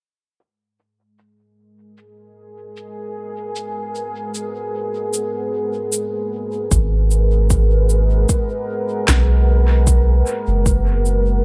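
Meditative and deep, this 76 BPM ambient dub fragment in G# minor opens at 0.4 s with electronic cabasa and a woody snare, both low-pass filtered and trailing dub echo; a moody, detuned sawtooth pad fades in from 2.5 s, holding a G#m7 chord through chorus and its own reverb; and at 6.7 s a round, soft sub bass arrives up front beside a layered electronic kick, with both drum parts carrying a tape-warm, small-room character inside a light overall reverb.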